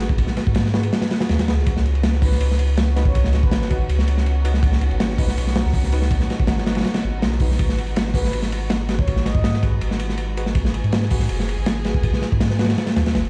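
Drum and bass with a jungle edge, this atmospheric yet frenetic excerpt runs at 162 BPM in G# minor, resting on a single G#m7 chord. A crunchy, saturated breakbeat kit with a tight kick sits up front beside a round, mellow dub sub bass. A dark chamber string section holds bowed sul tasto chords, while a deep, warbling vintage stab with chorus and dub echo lingers in the background. A breathy, flute-like synth lead with vibrato drifts in briefly at 2.2 and 8.1 seconds, and the mix sounds as if played on a big sound system in a bare stone room, dusted with vinyl crackle.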